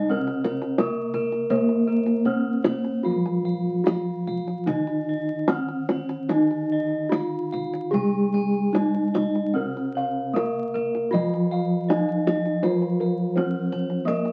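In a straight 4/4 pulse at 74-91 BPM in Bb slendro, this serene, shimmering excerpt of Javanese gamelan sets an up-front bronze metallophone melody struck with a wooden mallet over a mellow, boxy metallophone accompaniment played with padded disc mallets and a bright horn-mallet metallophone arpeggio line, while airy, very quiet bossed gongs hold the bass, padded bossed gongs add soft, round arpeggios from 0.1 to 2.7 seconds and again from 9.6 seconds, and a tight, dry kendang drives from 0.3 seconds, all under moderate reverb and the crackle of a very old 78 rpm record.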